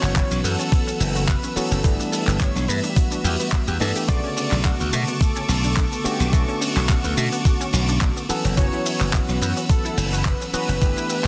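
Nu-disco with a groovy, cosmic mood at 107 BPM in B minor, this short excerpt cut from a longer piece rides a thumpy electronic kick up front and a punchy, glassy slap bass, with a dry, rolled-off 70s drum kit adding handclaps, hi-hat and shaker and a tube shaker sitting in the background. A barky, lightly overdriven tine electric piano carries the accompaniment while a thick, detuned unison lead with digital delay sings the melody, backed by a bright, bowed string section and a round analog pluck arpeggio with chorus, both pumping to the sidechain. The chords move from F#7sus4 through G6 and Bm9 back to F#7sus4, all in a small room ambience with a dense, heavily limited modern master.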